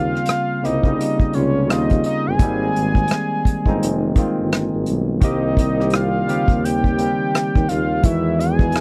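A dry, close recording in a 1970s studio style opens this short slice of smooth neo-soul R&B, moving at 85 BPM in 4/4 with swung sixteenths and a warm mood. A fat, detuned analog lead carries the melody up front, its sawtooth and square tones with a sub octave, filter sweep and vibrato sitting over a bright, barky tine electric piano through a combo amp, while a tuba with light vibrato plays the jazz-style bass line. An acoustic drum kit played with bundle sticks enters at 0.2 s with hi-hat, rim click and a punchy kick, and the harmony moves from Eb13 and Abmaj7 to Cm7 and Emaj7 as a new section begins at 5.2 s.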